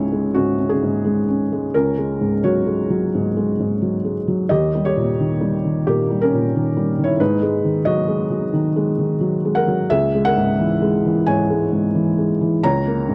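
In a loose, rubato 4/4, a felt-muted upright piano plays alone for this wistful, melancholic neoclassical minimalist excerpt, its thick-felt tone soft, mellow and intimate, sitting up front in a dry, close 1970s-style studio sound as the harmony drifts from C#m through D#7 and G#m7 before settling on a rootless F#/C# at 12.6 seconds.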